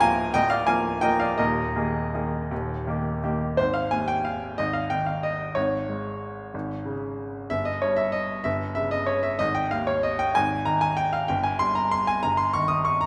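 A bright upright piano opens this elegant classical waltz alone, playing solo across the whole 13.1 seconds. Its tone is woody and polished, with a short sustain that keeps each chord crisp and up front. The feel is graceful and rubato in 3/4, with the tempo moving between 157 and 203 BPM. The opening phrase moves from Bb7/D through Ebsus4 to Eb. At 3.6 seconds a second section begins that circles around Ab and Eb harmonies, closing on Eb/G in this short passage cut from a longer piece. The instrument spans a deep D1 up to Eb6, tuned to A4 = 438 Hz, and sits in a wet recital-hall reverb with a 1.6-second decay that gives it the air of a church or concert hall.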